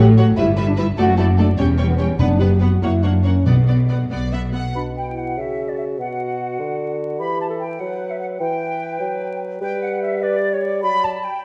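Clear, focused double basses anchor this quick classical-period passage for symphony orchestra, joined by even, bowed cellos on the bass line and a mellow French horn section holding sustained chords with a soft attack. The music moves in a lively, spirited 6/8 at 98 BPM in B minor with a rubato feel, and is cut from a longer movement. In the opening phrase a distant, rich violin section carries the melody over a smooth second violin line and a lush, close viola accompaniment, while very quiet timpani, played with medium mallets on calf heads, sound from 2.2 s. At about 4.8 s the woodwinds take over: an airy, crisp flute section sits up front on a second line beside a warm solo clarinet, while a dark solo bassoon with a smooth top supplies accompaniment, the harmony passing through Em, G and D/F#. The sound has moderate scoring-stage reverb and a vinyl crackle.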